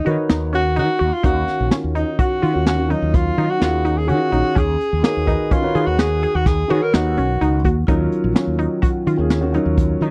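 A warm alto saxophone carries the melody up front, its vibrato-laden jazz tone sounding slightly distant and roomy as it moves between Eb4 and Bb4 until 7.6 seconds. This is a tense, driving passage of progressive instrumental band music in Eb minor, set in 7/4 at 127 BPM with a straight feel, cut from a longer piece. A dark, intimate baby grand piano accompanies with boxy, long-sustaining chords and audible action noise, while a glassy, crystalline wavetable pluck plays detuned arpeggios through chorus. Beneath them, a round fretless electric bass with analog chorus and a smooth brush drum kit with a punchy kick and medium-tuned snare sit up front, as the harmony moves between Abm11/Eb and Ebm9. At 7.9 seconds a metallic vibraphone struck with hard mallets rings on F4 in the background, and the dry, close 1970s-style studio sound keeps reverb to a minimum.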